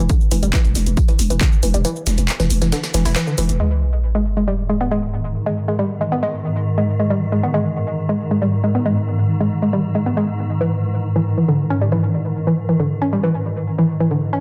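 Driving peak-time techno with an industrial, intense mood, built on a woody, wave-folded pluck riff that runs throughout, while a growling 808-style bass, an overdriven electronic kick, a gritty breakbeat sampler-style kit of hi-hat, snare and tambourine, and a punchy analog drum machine with handclaps, hi-hat and shaker drive the opening through a break from 1.8 seconds, followed by a sub drop impact at 3.6 seconds and a swarming, detuned granular drone entering at 4.5 seconds under a dense, heavily limited master.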